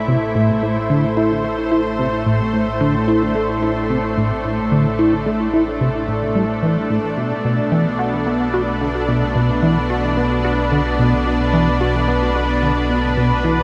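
Cosmic and mysterious, this ambient space-music excerpt moves at 110 BPM in a straight 4/4 in A minor, shifting from Am to Bm7 at 7.2 seconds. A lush, thick unison pad of detuned sawtooth and square waves holds sustained chords up front, bright and chorused, with a slow attack and long release. Beneath it, a deep, round sine sub bass fades in from the start and sustains low in the mix. Driving the sequencer feel is a punchy, funky analog bass riff built from sawtooth and pulse waves, with a dark filter pluck, a moving notch and a decaying tail, coloured by chorus, cassette tape character and delay. At 4.4 seconds a very quiet, bubbling texture enters, its resonant detuned sawtooth stepping through random filter changes with chorus and its own built-in reverb. The whole mix sits in a wet shimmer reverb with a long 6.5-second tail, deepening the spacious, otherworldly atmosphere.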